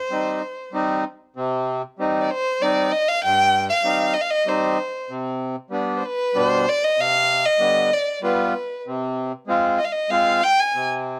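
Bittersweet and soulful, this short fragment of a longer klezmer piece moves at 96 BPM in a straight 3/4, set in C harmonic minor and tuned to A4 = 435 Hz. A single bowed violin carries the melody up front, its dark, smooth tone shaped by vibrato and an even delivery between B4 and Ab5, with a plate reverb giving it a soft halo. Beneath it, an accordion supplies the accompaniment from G2 to F4, sitting up front with a reedy, vintage, band-limited character. A brief opening passage gives way to a new section at 1.3 seconds, where the harmony rests on C minor, turns to G at 5.1 seconds and settles on F minor over C at 8.8 seconds. Close, detailed microphones and a light room reverb keep the pair intimate and clear.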